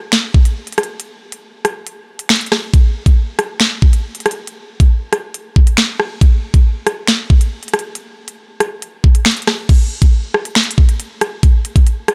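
An up-front electronic drill drum kit, with a knocking kick, sharp snare, crisp hi-hats, rim clicks, finger snaps and crash cymbal roughened by vintage 12-bit sampler grit, drives this menacing, ominous half-time hip hop excerpt in a digital ambience, dropping its kick briefly between 1.9 and 2.7 seconds before shifting into a new section at 9.7 seconds.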